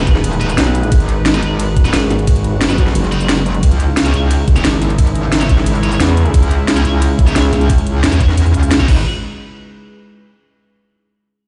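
Mechanical and dark, this 177 BPM technical drum and bass drop pairs a metallic, wobbling distorted bass and a growling FM bass that surfaces from 0.6 to 2.9 seconds and again at 6.0 seconds with a knocking electronic kick, an overdriven kit of cracking snare, bright hats, ride, crash and cabasa, a detuned, sidechain-pumped sawtooth pad holding G#m7 and C#madd9 chords, and high-gain double-tracked guitar stabs through tape echo, all thrown into a bare stone room.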